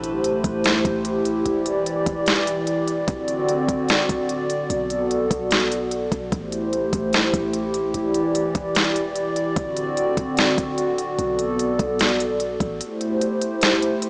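Atmospheric cloud-rap at 148 BPM in a half-time 4/4 feel, this hazy, ethereal passage in A dorian cycles through Am7, Em7, D7 and Bm7 under a hollow, flute-like pad that sits up front, its detuned chords softened by chorus and pumping against the sidechain. A smooth, tape-warm R&B kit with a knocking kick, deep snare and smooth hats drives the track, while a clean, boomy 808-style bass murmurs in the background until 12.8 seconds, when the kick also drops out through 14.1 seconds. Light reverb and a small-speaker sound give the piece a dim, intimate haze.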